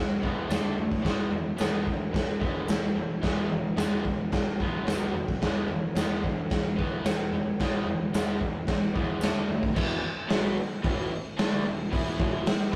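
A straight 4/4 pulse at 110 BPM drives this rowdy garage rock fragment in E mixolydian, with an overdriven, double-tracked picked guitar riff over chords moving between E, D5 and B5 and a growly, very quiet fuzz bass underneath. From 0.2 s an up-front, saturated drum kit with punchy kick, medium-tuned snare, hi-hat, toms and crash comes in, while a jingly tambourine sits close and dry in the background until 9.3 s. The rough rehearsal-room sound carries tube grit and a moderate stone-room reverb, and the piece shifts to a new section on E5 at 9.8 s.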